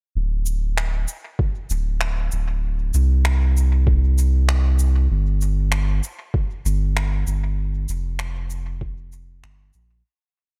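Spacious and deep, this short ambient dub piece rides a swung groove on a round, soft sub bass with long gliding notes and tube saturation, a muffled, thumpy electronic kick pitched down and up front, and sparse cabasa and finger snaps trailing dub echo, all in a dark production that fades out from 6.8 seconds.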